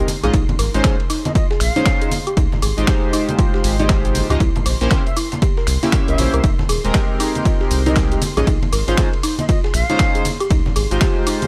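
Deep house at 118 BPM with a 16th-note swing, this deep, late-night excerpt sets a soft, round, chorused pluck playing arpeggios and glossy, tape-tinged polysynth stabs over a round, dark analog bass, a silky, evolving string pad in the background, an overdriven, punchy electronic kick up front, an overdriven analog drum machine of finger snaps, hi-hat, ride, shaker and woodblock, ringing hard-hand congas, a very quiet gritty breakbeat kit of ride and snare, and an airy, distant silver concert flute melody with vibrato and analog delay that enters at 1.3 seconds, all moving through Bbm11, Dbmaj9#11, C7b9 and Fm11 in a dry, gritty hardware sound.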